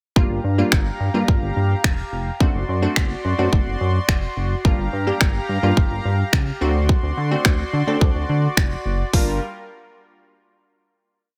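A four-on-the-floor dance-pop beat from a punchy, layered electronic kit of kick, hi-hat and finger snaps drives this short, confident, energetic piece, with a dark, glossy chorused synth bass up front playing an octave line with chromatic approach notes. Crisp, wave-folded wavetable chord stabs push the rhythm in close voicing while a smooth, detuned supersaw pad sustains underneath, the bass, stabs and pad all pumping against the sidechain as the Gm7 and D7 harmony cycles through the verse. Everything is dry and close, and a final Gm7 chord arrives at 9.1 seconds, with the parts sounding until about 9.4 seconds to close the piece.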